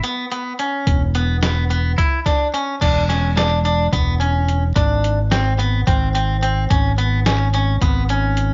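Progressive instrumental band music in 7/8, this short cut from a longer piece moves at 216 BPM in eighths with a straight, driving and intricate feel in E mixolydian. A clean electric guitar plays picked arpeggios between B3 and E4 from the start, its tone twangy, scooped and compressed, sitting up front with a cassette-tape character. A lo-fi sampler-style drum kit runs alongside it throughout, its pitched-down, muffled samples giving a thumpy kick, a medium-tuned snare, hi-hat and crash cymbal, all tape-warm. At 0.9 seconds a bright fingered electric bass enters low in the range of E1 to G#1, growly and direct, standing as the most prominent part. The harmony moves from a C#7 chord with its third omitted to E5, then to G# around 4.8 seconds and C#5/G# near the end, while the dry home cassette recording, with its top end rolled off, keeps the whole sound close and dusty.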